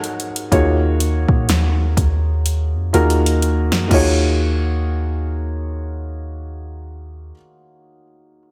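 A dry, close-up sound frames this moody, late-night contemporary R&B excerpt in Eb minor at 62 BPM with a light sixteenth-note swing, where a dark, mellow, boxy grand piano with short sustain moves from Abm9 to Ebm11, a deep, round, sine-like 808-style bass with a fast attack and decaying tone enters at 0.5 seconds, and a produced electronic drum kit with a soft kick, fat snare, metallic hats and crash, re-recorded in a large room, plays a fill from 2.5 seconds before stopping at 4.2 seconds.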